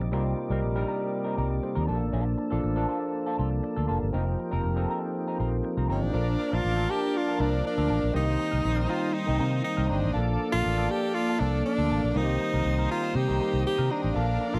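Sultry and danceable, this disco excerpt moves at 120 BPM in a straight 4/4, set in C dorian and cut from a longer piece. From the start, a round, amped fingered electric bass sits up front, while a barky tine electric piano, lightly overdriven and bathed in lush chorus, shares the accompaniment with a dark, clean semi-hollow electric guitar run through wah. A smooth tonewheel organ holds sustained chords in the background, colored by chorus vibrato. At 5.9 seconds a breathy tenor saxophone takes the melody up front, close-miked with jazz-style vibrato and subtone, and at 6.1 seconds a soft-attack studio string section, bowed sul tasto and given tape echo, adds a floating second line. The harmony circles Cm7 and Bbmaj7 with a brief F7sus4, and the dry, close 1970s-style studio sound keeps the whole mix intimate.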